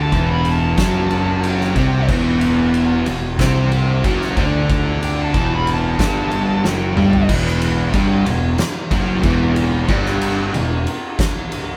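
A dark, compressed fuzz lead guitar solos high over a riff in E minor from a bright, double-tracked overdriven electric guitar, two thick fuzz guitars set back in the mix and a warm, overdriven fuzz picked bass, while an oversized, low-tuned drum kit enters at 0.1 s up front with a punchy kick, dark cymbals and a gritty, pumping big-room sound, in this sludgy, ominous stoner and doom metal excerpt at 92 BPM where a drum fill at 6.6 s closes the solo at 7.3 s before the band carries on together in one room under moderate reverb.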